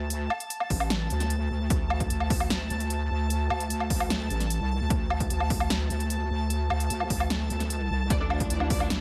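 A heavy, saturated wobble bass drives this menacing half-time dubstep excerpt in D minor at 150 BPM, pushed up front over an overdriven big-room drum kit with punchy snare, crisp hats and woodblock, an electronic kick entering at 0.7 seconds, and a blurred granular cloud pad pumping throughout, before a biting chamber violin section and a lush detuned unison pad arrive at 8.1 seconds, followed by a brief ring-modulated orchestra-hit-like synth stab at 8.2 seconds, all under light digital ambience.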